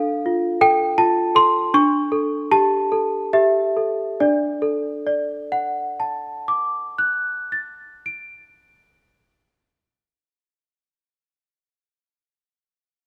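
A worn, slightly out-of-tune celesta plays alone up front with bell-like, delicate brightness from its hard felt hammers in this eerie, wistful classical lullaby excerpt in 3/4, easing into a slowdown over its opening 4.2 seconds and moving from minor harmony to a major resolution at 4.2 seconds, all set in a moderate scoring-stage reverb.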